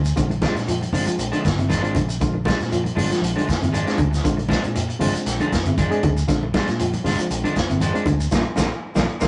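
A dark, lo-fi electric guitar through a small old amp opens with spring-reverbed arpeggios over a round, punchy fingered bass and a grainy shekere in the background, setting up a hypnotic, funky afrobeat groove at 118 BPM in Bb mixolydian on a Bb7 chord. A twangy second guitar at the edge of break-up adds stabs, a vintage drum kit sits up front with a punchy kick and rolled-off top, a barky, reedy electric piano with fast tremolo accompanies from the back, and very quiet, ringing congas join at 0.3 seconds. The rough rehearsal-room sound carries tube saturation and light reverb, and the band hits an accent from 8.3 seconds to the cut at 9.3 seconds.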